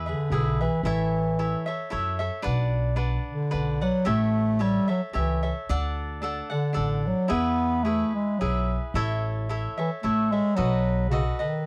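A lilting 3/4 swing at 111 BPM carries this proud, romantic mariachi-style Mexican folk piece in A major, where a warm, classical-style bass clarinet sings the solo melody up front over crisp, picked cavaquinho accompaniment and a woody, thumpy pizzicato upright bass, heard in a dry, close 1970s-style studio sound in this short cut from a longer piece.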